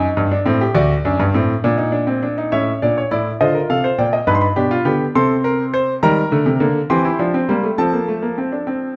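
A clear, smooth grand piano with a vintage tone and short sustain sits up front as it plays a serious, driving baroque-style four-part fugue in 6/8 at 68 BPM. It spans D2 to C6 through a moderate recital-hall reverb, with close, detailed miking, and its harmony shifts into a new section at 2.5 seconds in this 9-second passage cut from a longer piece.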